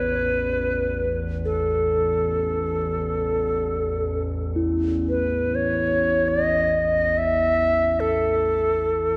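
Unfolding in free time, this peaceful, calm meditative world excerpt in A lydian sets an airy, wooden cedar flute with vibrato and a soft attack up front over a dark, nostalgic, warbling pad drone with chorus, while a ringing bronze singing bowl with slow beating joins in the background at 4.6 s, all bathed in a lush hall reverb and the pitch drift of worn cassette tape.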